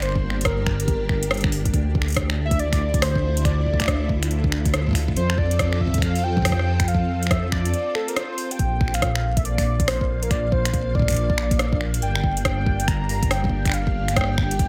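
A velvety, warbling synth lead with chorus and tape echo opens this wistful, playful IDM excerpt over silky string-machine chords treated with phaser and ensemble chorus, a dark, detuned sawtooth bass that rumbles up front, and a booming analog drum machine of finger snaps, metallic hi-hats and rim clicks. A deep electronic kick joins at 0.2 seconds, the swung sixteenths give the groove a loping bounce, and a brief break arrives at 7.7 seconds. The harmony moves from Gm through Dmadd9, F and Bb before returning to Gm, all in a light reverb.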